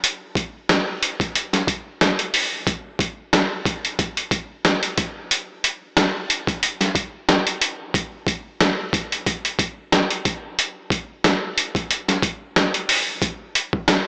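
A gritty, dark hip hop groove at 91 BPM in 4/4 with a light 16th-note swing, carried by a boom bap sampler-style drum kit of hi-hat, thumpy kick and medium-tuned snare, compressed, pitched down and tape-warm, sitting up front with a small-room character under a moderate plate reverb and a small speaker sound across this 14-second excerpt.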